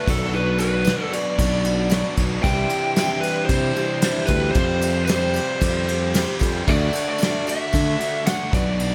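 A straight 4/4 groove from a soft brushed drum kit with a punchy kick and a bright, growly fingered bass drives this hopeful, jangly folk and heartland rock excerpt, where a dark, overdriven lead guitar through a small cranked amp carries the melody over a double-tracked crunchy guitar riff, a boxy picked swing-style acoustic guitar in the background, a very quiet mellow organ turning through a fast rotary speaker and a close, jingly tambourine, set in moderate studio reverb over Bm, Cadd9, Fsus2 and D.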